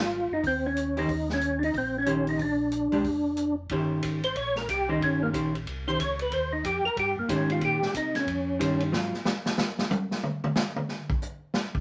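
A brisk swung 4/4 at 184 BPM drives this bluesy, soulful soul jazz organ trio in Eb mixolydian, cut from a longer piece. Up front, a percussive tonewheel organ with third harmonic percussion carries the melody and solos from 3.7 s, while a mellow, round tonewheel organ supplies the bass; both run through a slow rotary speaker and chorus vibrato. A dark, clean, picked hollow-body electric guitar adds accompaniment over chords moving from Ab6 to Eb13, and a vintage acoustic drum kit with a punchy kick and rolled-off top takes a solo from 8.9 s, set in a short, wet studio reverb.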